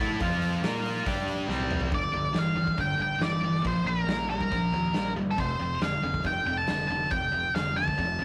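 A rough rehearsal-room recording with saturated grit and a moderate stone-room reverb frames this short slice of gritty, swaggering classic rock in a straight four. Two picked electric guitars drive the riff from the first moment. One is a cranked stack with overdrive and the other is tightly distorted, both bright and sitting in the background. Beneath them runs a fingered electric bass, direct and amped, with overdrive and fuzz. A big acoustic drum kit comes in at 0.2 s with hi-hat, punchy kick, medium-tuned snare and toms, its tone dark and smooth with a rolled-off top, and a drum fill at 1.5 s leads into the next section. At 1.9 s an octave-fuzz lead guitar, distorted and picked, steps up front to carry the melody, while the chords move from G5 through Bb5 before landing on F.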